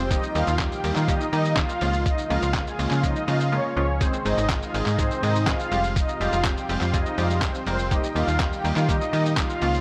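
Carefree and euphoric, this dance-pop excerpt rides a straight 4/4 pulse. A muffled, pitched-down sampler-style drum kit with a thumpy kick sits up front beside a snappy FM slap bass with a metallic attack, while punchy, bright sawtooth chord stabs with chorus pump over a very soft, breathy pad. An evolving supersaw melody with a filter swell leads, pausing with everything else for a brief silent gap at 3.5 seconds, and from 4.5 seconds a hollow, vintage group handclap joins very quietly in the light digital ambience.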